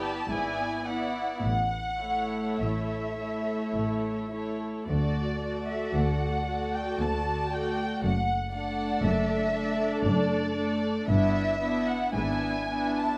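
A muted string orchestra begins together, with the symphonic violins carrying the melody up front in a lush, veiled tone with vibrato, while the chamber violins add a smooth-topped second line and the violas, also up front, supply a dark accompaniment with light vibrato. Beneath them, the symphonic cellos sit in the background as the bass, joined by double basses with a soft attack, every section playing con sordino in this tender, slow romantic movement in D major, in 3/4 at about 50-61 BPM with a rubato feel. Light reverb and close, detailed microphones frame this brief passage, which is cut from a longer piece and tuned to A4 = 437 Hz.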